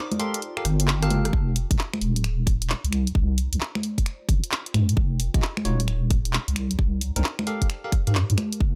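Dry and up front, this short cut from a longer two-step UK garage track moves at 132 BPM with a skippy, late-night swing, opening with a soft FM synth bell through chorus, phaser and tape echo, and a warbly, nostalgic lo-fi pad pumping in the background before the electronic kick lands at 1.3 seconds under a tape-warm garage kit of congas, finger snaps, handclaps, hi-hat and rim click, while a deep, dark wobble bass holds the low end and a barky, bell-like tine electric piano stabs out Gm9, Fm9, Ebm9 and Cm9 chords with subtle chorus and digital delay.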